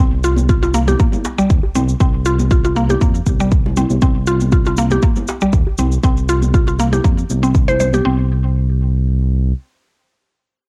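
Afro house at 119 BPM in 4/4 with a light swing on the sixteenths, this short cut from a longer piece has a warm, hypnotic mood built over a single F5/C harmony before the chords drop away at 8.1 seconds. A woody, round, mallet-like FM synth pluck plays arpeggios up front, its fast attack and short decay colored by chorus, analog delay and sidechain pumping. Beneath it, a smooth sawtooth-and-triangle synth bass holds sustained, mellow low notes, also up front and pumping with the sidechain, and it is the last part sounding, running to 9.5 seconds. A punchy, layered electronic kick drum sits forward in the mix with a tape-softened character, joined by a faint cabasa that shares that cassette coloring. In the background, ringing high-tuned congas and a tight, cracking djembe are played with soft hands, the djembe close and dry. The home cassette recording carries little reverb, keeping the groove intimate and direct.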